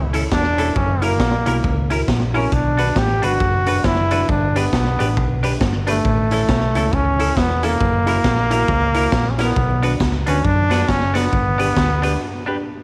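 A brilliant, up-front trombone with light vibrato carries the melody over a round, dark hollow-body bass from the first moment of this bouncy, upbeat ska excerpt at 136 BPM with a swung feel, joined at once by a twangy, compressed clean electric guitar, a worn, slightly detuned upright piano adding mellow, woody stabs in the background, and a gritty garage drum kit with a high-tuned snare, punchy kick, hi-hat and slapback echo, as the chords cycle through A, F#7, Bm and G under light reverb and vinyl crackle before a brief break at 12.2 seconds.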